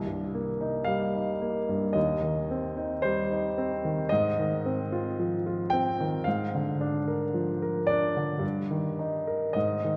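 A clear, polished baby grand piano sits up front in this dreamy, serene romantic nocturne excerpt, drifting with rubato at a slow 56 BPM in 4/4 through Cm7, Cm/Eb, Fm7/Ab and Bb7/Ab before settling on Eb/G at 8.4 seconds, its range spanning C2 to G5 and bathed in a wet concert hall reverb with a 2.3-second decay.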